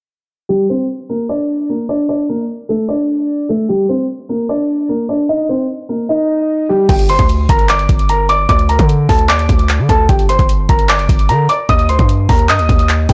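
Melancholic and brooding, this trap-leaning hip hop cut moves at 150 BPM in a half-time feel, set in G minor and tuned slightly flat of standard pitch. A dark, mellow concert grand piano carries the melody from 0.5 seconds, its boxy, intimate tone revealing audible action noise and deep bass, while a low-pass filter sweep shapes it through the opening stretch. At 6.9 seconds a hard-hitting 808-style bass and a trap drum kit arrive together, the bass punchy and heavy with a sine body, a noise layer, a fast attack and a decaying tail, and the electronic kit bringing a knocking kick, metallic hats, handclaps and crash cymbal. The harmony circles between G minor and D power chords, with the opening passage using rootless G minor voicings and a brief chordless moment before the full groove, then turning to E-flat near the close. The piano, bass and drums all sit up front in a blown-out, overdriven mix with light reverb, digital ambience and a low-pass filter darkening the whole. 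The passage is cut from a longer piece, ending at 13.1 seconds.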